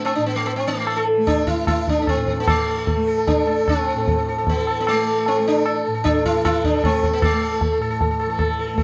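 In a straight three-beat metre that gradually speeds up, this short fragment of Hindustani classical music carries a longing, meditative mood. The plectrum-plucked sitar sits up front with the melody, its buzzing tone ringing with shimmering sympathetic strings, while a softly plucked tanpura hums a low drone beneath it and a high-tuned, ringing tabla joins at 0.1 s. The sound is that of a dry, close 1970s-style studio recording with light reverb.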